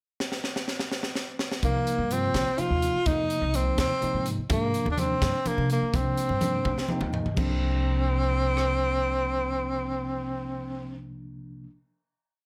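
A crisp fusion drum kit opens this short, nocturnal and intense piece of electric jazz fusion with a fill at 0.2 s, its bright cymbals, high-tuned snare and punchy kick setting up a 6/8 groove at 84 BPM in C minor. At 1.6 s a breathy, close-miked tenor saxophone enters up front with an intimate, vibrato-laden motif-based solo touched by slapback echo, over syncopated quartal chord stabs from a bell-like tine electric piano and a woody, dark pizzicato upright bass riff moving through Cm7, Fm7, Abadd9 and Cm9. Very quiet ringing congas add colour in the middle, and the drums and electric piano each play a fill before the piece settles on a final Csus2 chord at 7.4 s in a moderate studio reverb.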